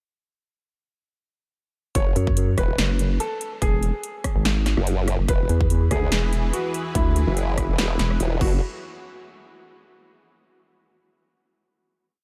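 Heavy wobble dubstep at 144 BPM in F# minor, with a half-time, lightly swung feel, this short, chaotic and menacing piece opens at 2.0 seconds straight into a drop, where two up-front wobble basses with chorus and overdrive, one sawtooth-edged and detuned, the other nasal, resonant and dark, trade modulated phrases of changing wobble speed, the vowel-sweep bass answering the formant-sweep one, over a punchy layered electronic kick and a big-room kit of punchy snare, metallic hats, rim clicks and crash. Above the grind, a soft, felt-muted upright piano with tape echo repeats a mellow, intimate riff melody, and from 5.7 seconds a lush, bright unison pad with chorus, phaser and sidechain pumping adds thick sustained chords as the harmony moves from F#5 to E and then F# minor. The drop ends at 8.6 seconds and gives way to a final hit, all set in light reverb and digital ambience.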